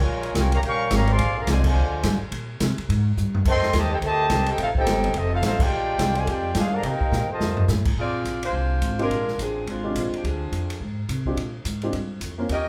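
Energetic, joyful big band swing in which a mellow, lightly vibrato trumpet section carries the melody over a veiled, cup-muted trombone line until 7.7 seconds, a woody, thumpy pizzicato upright bass and an airy drum kit with dark cymbals and a boomy kick drive the band through ensemble accents and drum fills, and from 8.0 seconds a soft-attack saxophone section takes the melody, joined at 9.0 seconds by an intimate baby grand piano with audible action noise adding short-sustained accompaniment, all in a moderate studio reverb as a cut from a longer piece.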